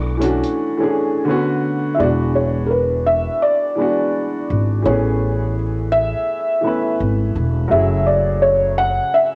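A hazy home recording on cassette, set in a small room with a moderate spring reverb, opens this short cut from a longer lo-fi hip hop piece. A felt-muted upright piano carries the melody in a soft, dark, intimate voice, while a second, clear and woody upright piano supplies the accompaniment beneath it, both colored by cassette tape and sitting up front. A pizzicato upright bass with steel strings adds a growly, acoustic low end that holds until 9.0 s. A compressed electronic hi-hat, roughened with vintage 12-bit sampler grit, sounds only briefly from 0.2 to 0.6 s. The swung 16th-note feel and harmony moving from Bm11 through E9 and Amaj9 to F#m9 give the fragment a nostalgic mood.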